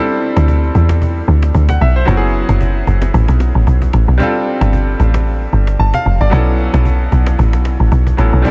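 Soulful and hypnotic, this amapiano excerpt sets a punchy, up-front log drum bass with a woody, mellow decay beneath brilliant grand piano chords of short sustain and a close, dry cajon played with soft hands, its kick muted from 5.3 to 6.3 seconds, all within light reverb and small room ambience.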